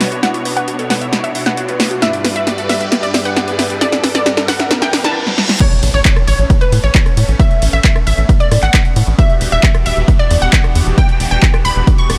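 Emotional and euphoric, this uplifting trance excerpt at 134 BPM builds as a lush, detuned unison pluck melody with tape echo, a bright phaser-tinged supersaw swell holding sustained chords, a background pluck arpeggio with cassette-tape colour, a punchy, overdriven analog drum machine fill and a very quiet riser and reverse cymbal gather under a filter sweep, until the drop at 5.6 s brings an impact, a layered up-front electronic kick and a catchy, chorus-thickened plucky unison lead as a second line, joined a moment later by a tight sawtooth sequencer bass, with the synths pumping to the sidechain over chords moving from Bmadd9 through G, Aadd9 and Em7.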